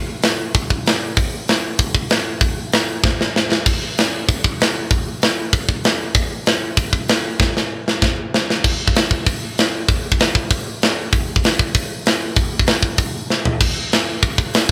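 A straight 4/4 pulse at 193 BPM drives this upbeat, rebellious punk fragment, cut from a longer piece. A tight metal drum kit carries the whole passage, entering at 0.2 seconds and sitting up front in a mid-forward, saturated mix. Kick, snare, hi-hat, toms and crash cymbal are all heard, with a tight kick, a medium-tuned snare and bright cymbals giving the kit a gritty edge. Fills mark the turns in the arrangement: one at 3.0 seconds, another at 7.4 seconds leading into a new section, and again at 13.3 seconds, just before a brief closing passage. The sound is of a band playing live in one big room, touched with light reverb.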